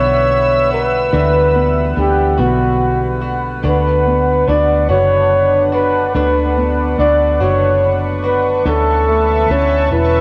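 A mellow flugelhorn carries the melody from the very start of this tender, romantic pop excerpt, its soft-attack, jazz-style line sitting up front with a cassette-tape tint, plate reverb and tape echo. Underneath, a dark upright piano plays woody, intimate accompaniment with its action noise audible. A lush unison pad holds thick, detuned sustained chords with slow attack, long release and chorus, and a bright, clean electric guitar recorded direct picks compressed arpeggios in the background. A foam-muted fingered electric bass gives a round, punchy, amped low end placed up front. At a slow 48 BPM in a straight 6/8, the harmony moves from Emadd9 to Bm at 3.6 seconds and settles on Aadd9 at 8.7 seconds, all in a moderately ambient booth with the character of a home cassette recording.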